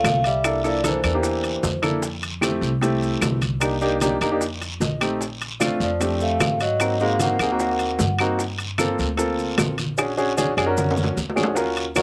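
A driving, fiery Afro-Cuban jazz excerpt at 151 BPM opens with dark, soft-mallet vibraphone carrying the melody over a distant, vibrato-laden tenor saxophone second line, both touched by slapback echo and returning at 5.8 seconds, above an up-front baby grand piano accompaniment, thumpy gut-string upright bass, ringing metal-shell timbales, low-tuned congas and very quiet bongos, with dry woody claves and saturated, raspy guiro and grainy maracas filling out the percussion until a drum fill at 10.8 seconds.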